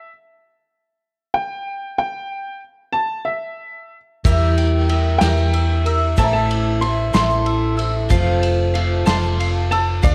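This wistful, bittersweet indie folk excerpt in 6/8 at 62 BPM opens on a dark, mellow upright piano carrying the melody alone, until a boxy, shimmering twelve-string acoustic guitar with audible finger squeak, a woody picked mandolin playing arpeggios, and an unplugged drum kit with punchy kick, ride and bundle-stick snare join at 4.2 seconds. A round, up-front hollow-body electric bass and a grainy tube shaker tucked in the background follow at 4.3 seconds as the harmony moves through Edim, Am and F. The dry sound carries the warbling pitch drift of worn cassette tape.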